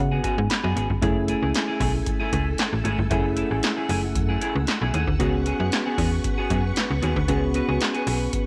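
Set in light reverb, this funky, late-night cut of early-eighties boogie funk opens with a worn, slightly out-of-tune tine electric piano fill, over a snappy, digital FM slap-style bass and an up-front analog drum machine with a deep kick, punchy snare, handclaps and metallic hi-hats. A clean, picked semi-hollow guitar plays a riff treated with analog chorus. From 1.0 seconds a lush, mellow sawtooth string machine adds soft-attack sustained chords with ensemble chorus, as the harmony moves from C#7sus4 to F#m9 and back to C#7sus4 at 5.2 seconds.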